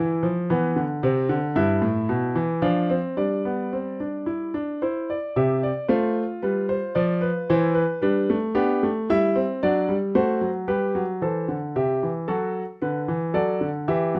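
A solo concert grand piano opens this solemn baroque-style fugue in three voices, its smooth, vintage tone sitting up front with a deep bass reaching down to G2 and an upper range extending to F5. At 112 BPM in a straight 3/4, the C major harmony moves through chords such as Csus2, G7 and D7/F#, then turns to F#m and Bm/D after the opening material returns at 11.2 seconds. Close, detailed miking and light reverb give this serious 14.2-second excerpt, cut from a longer piece, an intimate clarity, with the instrument tuned to A4 = 442 Hz.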